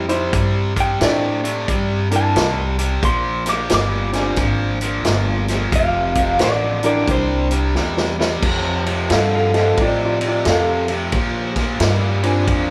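A swinging 4/4 shuffle drives this rollicking, swaggering electric blues excerpt, where a bright overdriven guitar riff, growly pizzicato upright bass and an up-front vintage drum kit with dark cymbals and a punchy kick lay down the groove beneath a long-sustaining upright piano accompaniment, a brilliant second upright piano adds a short line at the very start, a slightly broken-up, compressed guitar through a small old amp carries the melody from 0.8 to 7.5 seconds, and a drum fill at 7.8 seconds leads into the next section, with the band playing live together in one room under moderate large studio reverb.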